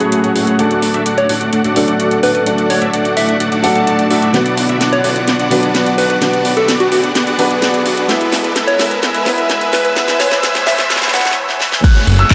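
A huge ambient reverb washes over this powerful, emotional festival progressive house build-up at 128 BPM, cut from a longer piece, where a thick, detuned supersaw riff with dub echo and a sweeping low-pass filter pumps up front over a felt-muted upright piano, a lush chorused pad with vintage 12-bit sampler grit, and a very quiet fat analog bass, moving through F#madd9, D, Bm and E. A house drum kit with cracking snare, handclaps and metallic hats plays fills from 4.3 seconds, while a round, warbling FM synth lead carries the melody in the background, and very quiet risers and noise sweeps climb toward a brief break at 11.4 seconds. At 11.8 seconds a punchy electronic kick and brilliant baby grand arpeggios arrive on the return to F#madd9.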